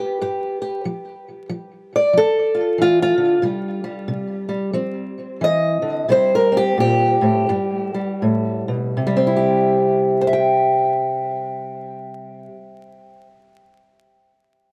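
Vinyl crackle and a moderate studio ambience frame this rollicking, swaggering snippet of acoustic country blues in C major, swung in 4/4 at 78-93 BPM. A lone fingerpicked, ladder-braced acoustic guitar sits up front with a dark, woody, boxy tone from old strings and a touch of tape echo, ranging from G2 to G5 as it moves through G, F and C. The playing slows from 3.4 seconds, and a new section begins at 9.0 seconds before this cut from a longer piece ends.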